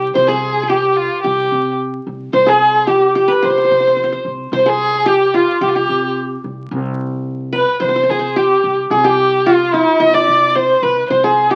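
Heard through the crackle of a very old 78 rpm record, with a moist studio ambience around it, this fragment of a longer Arabic piece has a stately, warm mood and a steady, straight pulse. A rich, boxy single violin carries the melody up front, bowed with vibrato, expressive portamento and microtonal inflections. Beside it a bright-edged qanun, fingerpicked on triple strings, plays a second line, while a woody, thumpy pizzicato upright bass on gut strings sits darker and lower in the mix.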